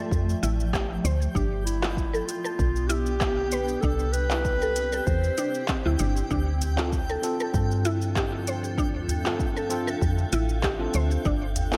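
A soft-attack clarinet carries the melody in a classical, solo style for the first 6.0 seconds, its line trailed by delay in this mystical, organic downtempo piece in D dorian at 97 BPM with a gentle sixteenth-note swing. Beneath it, a cloudy, evolving granular pad holds blurred, detuned chords bathed in its own reverb and pumping with the sidechain, while a twinkling granular texture sparkles high in the background. A woody, percussive FM pluck spins arpeggios through chorus, delay and a cassette-tape haze, and a round, dark FM bass sits up front with the same pumping motion. The rhythm comes from a deep, overdriven electronic kick and a produced kit of cabasa, handclaps and smooth hi-hats, both re-recorded in a large room, with a small, close udu joining at 6.6 seconds. At 6.8 seconds a worn, slightly out-of-tune tine electric piano enters with delayed, pumping accompaniment. Across the excerpt the chords move from Dmadd9 through G and Cadd9, then return to Dmadd9 before closing on G, all set in light digital ambience.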